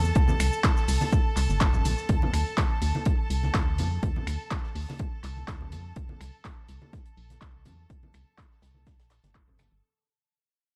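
A lightly swung 124 BPM deep house groove in 4/4 rides on a punchy, overdriven electronic kick up front, with a layered kit of finger snaps, handclaps, hi-hat and shaker, ringing hard-handed congas, and a dry, high-tuned acoustic snare and hi-hat set in the background. A hollow, organ-like FM bass with a fast attack pumps with sidechain compression beneath a clear, biting chamber violin section that also breathes with sidechain pumping, over chords moving from C5 to D5 at 2.1 seconds and back at 6.0 seconds. The moody excerpt has a gritty, small-room character, with a filter sweep on the drums and a fade-out running through its 9.8 seconds.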